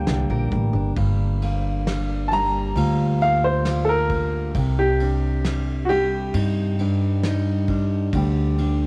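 A bright, woody upright piano carries the wistful melody from 2.3 to 6.3 seconds in this reflective acoustic folk excerpt, over fingerpicked steel-string guitar with finger squeak, a pizzicato upright bass up front, soft brushed drums with a fat snare, and a brief twangy pedal steel note at the very start, all set in a small-room home cassette recording moving from Gm7 through Cmadd9 to Dsus4.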